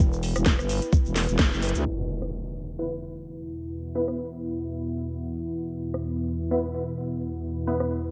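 Swung sixteenths drive this aggressive, bouncy bass house excerpt in E minor at 129 BPM, with an overdriven, knocking electronic kick and a growling, thick FM bass pumping up front over a tape-warm garage kit of cracking snare, metallic hats, rim clicks and crash, while a grainy egg shaker sits close and dry in the background. A deep, moody, warbling ambient pad hums underneath with chorus and reverb. At 1.9 seconds, once the kick and bass have dropped away, an electronic impact lands and an airy, evolving resonant pad enters with a filter sweep; from 2.8 seconds bold, punchy orchestra-hit-like stabs cut through, bright with reverb and digital delay.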